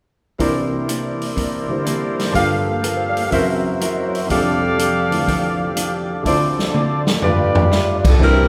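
A reverberant hall sound frames this energetic, joyful big band swing at 123 BPM in C mixolydian, with a punchy-kicked drum kit and vibrato-laced trumpet stabs up front, a woody upright piano with short sustain, and a dark, clean hollow-body guitar in the background, all moving through chords from C9 via F#7#11 to G7. A drum fill arrives at 6.7 seconds, and at 8.1 seconds the close-miked saxophone section takes up the melody, joined at 8.2 seconds by the upright bass before this fragment of a longer piece breaks off.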